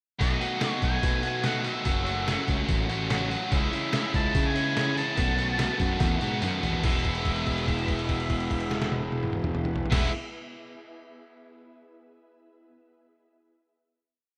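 A straight 4/4 pulse at 145 BPM drives this short, carefree indie rock piece in E major. The drums are a compressed, pitched-down, gritty sampler-style kit with a thumpy kick and medium-tuned snare, sitting up front in a big rock groove of kick, snare, hi-hat, toms and crash. Two biting overdriven guitars strum picked chords for a jangly riff, one up front and the other very quiet, while a fuzzy, overdriven picked bass grounds the low end. Above them, a dark octave-fuzz lead guitar with slapback echo plays a motif-based melody in period phrases over a B7, F#m7, C#m7 and B7sus4 pre-chorus. An ethereal, warbling pad with a slow attack and ensemble chorus enters very quietly at 4.6 seconds, and after a drum fill at 6.0 seconds the band lands on a held E chord at 6.8 seconds. The whole track has the rough, lightly reverberant feel of a home demo.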